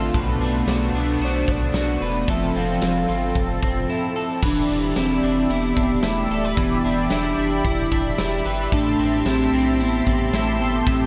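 Ethereal and floating, this dream pop excerpt moves at 112 BPM in a straight 4/4, with a detuned sawtooth pad holding sustained chords from Bm7 and Fmaj7 to Em7 and Am7 while a slightly broken-up, scooped electric guitar picks arpeggios through analog chorus and delay. A round sine sub bass and a huge arena drum kit with a punchy kick, fat snare, ride, crash and tambourine carry the groove. From 1.0 s a hollow, woody clarinet-like synth lead sings the melody with vibrato, chorus and delay, and everything floats in an enormous ambient reverb.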